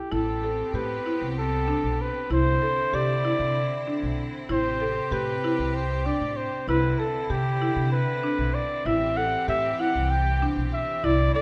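A warm flugelhorn and a buzzing marimba open this playful, shimmering chamber piece together, cut from a longer work and set in 7/8 at 192 eighth-note beats per minute with a straight feel. The close-miked flugelhorn carries a jazz-style solo melody up front, sliding into notes with scoops, while the marimba's medium hard mallets draw woody, boxy arpeggios from its hardwood bars. A moment later a plucked upright bass enters with a woody, steel-strung bass line placed up front, joined by a bowed studio string section holding sustained chords in a clear, biting tone with light vibrato and a smooth top. The harmony moves through Am9, Cadd9, Am9, Cmaj9 and Am7, and a moderate scoring-stage reverb gives the ensemble a sense of space.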